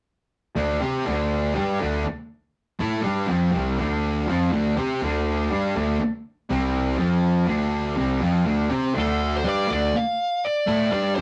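A straight rock pulse drives this menacing, raw clip from a longer piece, with a bright, double-tracked and compressed fuzz guitar riff and a punchy, overdriven picked bass starting together at 0.6 s over chords moving from Dm through C5 and F5, back to Dm and on to D5. At 9.0 s a warm, distorted lead guitar takes up a high melody. The whole sounds like a rough small rehearsal room with warm saturation.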